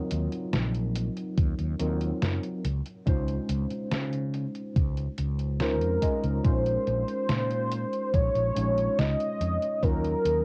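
Hazy, woozy vaporwave at 71 BPM in Bb minor, in which a worn, slightly out-of-tune tine electric piano with chorus, 12-bit sampler grit and tape echo drifts through lush ninth and eleventh chords over a growly, punchy fretless electric bass up front, while a detuned 8-bit drum machine ticks out hi-hat and a medium-tuned snare, a thumpy electronic kick joins at 1.4 seconds, and a velvety, vibrato-tinged synth lead enters at 5.6 seconds, all captured on a cassette home recording with light reverb in this short cut from a longer piece.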